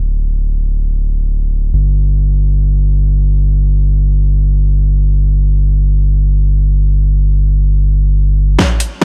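Cavernous and dark, this deep dubstep excerpt in free time opens with a soft, round dub sub bass alone for 8.6 seconds before a brief drum fill from 8.6 to 9.0 seconds brings in a punchy, tape-warm electronic kick and a layered kit with a huge low-pass-filtered snare and metallic filtered hats in small room ambience.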